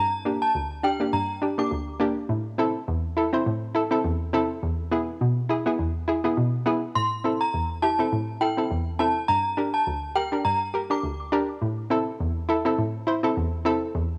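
Bouncy and sultry, this dancehall excerpt moves at 103 BPM in 4/4 with a light swing on the sixteenths, set in A phrygian and tuned slightly below standard pitch. A hollow, nasal square-wave pluck carries the accompaniment from start to finish, its detuned tone thickened with chorus, a faint noise layer and a sine sub octave, snapping in with a fast attack and short decay across a low-to-middle range. Above it, a chiming FM synth lead sounds briefly at the very start, then returns from 7.0 to 11.0 seconds with ringing, inharmonic tones in a high register, shimmering through ensemble chorus and analog delay. The harmony cycles through Gm, Am and E before settling back between Am and Gm. Both parts sit up front with a cassette-tape grain, and a light reverb gives the home-recorded sound a close, intimate space, cut from a longer piece.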